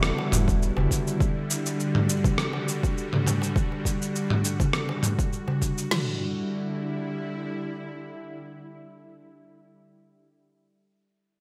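This short cut from a longer organic downtempo piece opens on an Em7 chord, with a tense, string-like sawtooth drone, a gritty tine electric piano, a round sine sub bass and a compressed, overdriven sampler-style kit of rim click, shaker and toms all sounding at once. The mood is mystical and hypnotic, at 102 BPM in 4/4 with a light swing on the 16ths, in E minor. The electric piano plays through a combo amp with phaser, digital delay and sidechain pumping, and it stops at 1.2 s, while the bass is also brief. A clay-shell darbuka played with hard hands sits in the background, and at 0.5 s a deep house kit arrives up front with a punchy kick, woody snare, crash and toms, treated with gated reverb. The drone, with its slow attack, vibrato, 12-bit sampler texture and pumping, carries on until 9.0 s, under a moderate plate reverb and a bright 1980s-style digital production.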